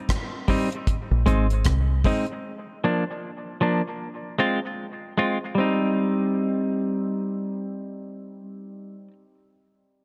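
A lightly reverberant small-room sound with heavy echo frames this deep, meditative dub reggae excerpt in C minor at 77 BPM with a swung 16th feel, where a dry, tight-kicked drum kit of hi-hat, kick and rim click and a dark, round, foam-muted fingered bass sit up front briefly near the start, while a clean, compressed semi-hollow electric guitar with warbly pitch drift and dub echo carries on until 9.1 seconds over chords moving from Cm through Ab, Bb and Fm back to Cm.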